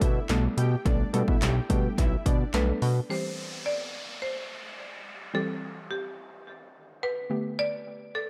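A carefree, euphoric dance-pop excerpt in C major at 107 BPM opens on a drop. Up front are a punchy analog drum machine playing kick, snare, handclaps and hi-hat and a fat, detuned sawtooth bass, and both stop at 3.0 s. Above them a mellow supersaw carries the opening melody, while a soft, round pluck with chorus plays the accompaniment throughout. The supersaw, pluck and bass pump with sidechain, and dub echo trails the supersaw and pluck. From 2.5 s a dry, woody marimba struck with hard mallets takes over the melody with a bright, buzzing, airy edge and its own dub echo. As the second section begins at 3.1 s, a faint electronic downlifter sits beneath while the harmony moves from Gadd9/B to C and then to Gadd9, all set in an echo-heavy mix with light reverb and digital ambience.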